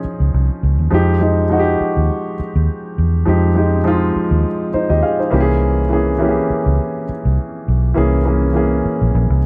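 Silky and bittersweet, this short excerpt of lush 1970s-style soul moves at 102 BPM in 4/4 with a gentle 16th-note swing. A grand piano carries the accompaniment from 0.0 to 9.5 seconds, its intimate, natural tone sitting up front with audible action noise adding a close, human texture. Beneath it, a vintage muted fingered electric bass holds the low end through 9.4 seconds, its dark, foam-muted sound round and amped, also placed near the listener. The harmony drifts from Eb9sus4 into Fm9 and settles on a tense C7b9b13 at 5.3 seconds, giving the passage its wistful pull. Light reverb lends the pairing a soft sense of space while keeping both instruments close and tender.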